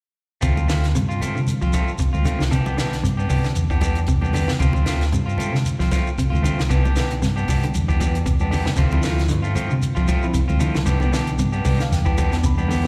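A dark, round hollow-body bass anchors a Dm7 to Cmaj9 vamp in this defiant, intense afrobeat excerpt at 115 BPM in D dorian, while a punchy, dry cocktail drum kit with a high-tuned snare, a grainy shekere, background congas with a thin, bright skin and slapback echo, a clean fingered guitar playing background arpeggios, and a picked, scooped guitar at the edge of break-up throwing slapback-echoed stabs fill out the groove. A worn, slightly out-of-tune tine electric piano with light overdrive joins at 8.9 seconds and plays a fill from 11.4 seconds, all heard as a live gig through the venue's PA in a recital hall.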